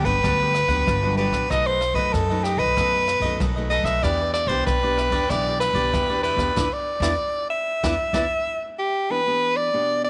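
A light reverb surrounds this short cut from a longer samba and choro piece, with the soprano saxophone sitting up front. At 95 BPM in a straight 4/4 and in E minor, the mood is bittersweet and yearning as the harmony moves through Gmaj7, B7 and Em7. The clear, punchy soprano saxophone carries the melody in a forceful jazz style with vibrato. Behind it are a bright, crisply picked cavaquinho and a full-bodied nylon-string guitar, fingerpicked in a classical manner. A woody, growly pizzicato upright bass and a natural-sounding, small-room brush kit with dark cymbals, a medium-tuned snare, rim clicks and a boomy kick fill out the groove, and the band hits an accent from 6.6 to 9.1 seconds. By 8.3 seconds the cavaquinho, bass and drums have stopped, leaving the saxophone and guitar to carry the final moments into a new section.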